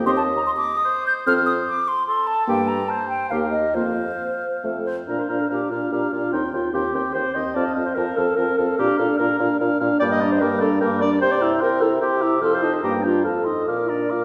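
A hollow, pure concert flute carries the melody from 0.1 seconds, tongued and close-miked with vibrato, over a graceful, lively wind quintet movement in the classical style, played in triple time with a rubato feel. Beneath it, a mellow oboe with light vibrato sings a second line, while a dark, distant clarinet and a clear French horn fill out the accompaniment, and a roomy bassoon grounds the bass. The passage is cut from a longer piece and heard from further back in a recital hall with a wet, lingering reverb, moving through two sections that shift at 5.1 seconds.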